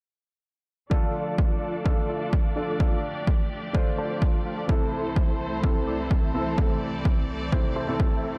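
A steady 127 BPM pulse in 4/4 drives this anthemic, emotional festival progressive house excerpt in D minor, with a punchy, layered electronic kick sitting up front from 0.9 to 8.1 seconds. Over it, a huge, detuned supersaw riff with a sub octave and fast attack carries the hook, thickened by compression and vibrato, while a low-pass filter, digital delay and sidechain pumping shape its sustained tone. A present baby grand piano plays accompaniment beneath, also pumping with the sidechain and trailed by digital delay. A bright, intense string section holds bowed, close-miked sustained chords with vibrato, filtered and pumping in the same breathing motion. The harmony moves from Dm to Am/C at 4.7 seconds, and the dark production wears only light reverb, giving the whole an emotional, driving lift.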